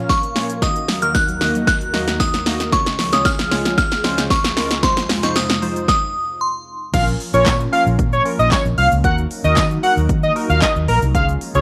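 A light reverb and digital ambience frame this energetic, driving dance-pop excerpt in Bb minor at 114 BPM, where a crystalline FM synth bell carries the melody over detuned digital keys, an airy breathy pad and a soft, round pluck tucked in the background, all riding sidechain pumping, while a punchy, layered house drum kit and a very quiet, jingly tambourine push the build-up. After the drums break off at 5.9 seconds, the drop lands at 6.9 seconds with a bold, retro octave-doubled sawtooth lead with vibrato and slapback echo up front, joined by a dark, foam-muted vintage electric bass.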